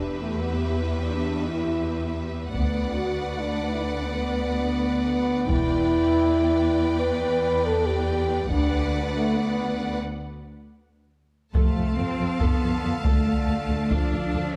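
Free-time and cut from a longer piece, this heroic, relentless epic orchestral film cue in E minor sets a bright violin melody over an intense second violin line, lush violas in the background, clear sustained French horn chords and a focused, up-front cello bass; saturated hard-stick taiko drums and distant bowed double basses join at 2.5 seconds, and warm, roomy woodwind chords arrive at 11.5 seconds as the harmony turns to F and Dm, within a dark production with moderate scoring-stage reverb.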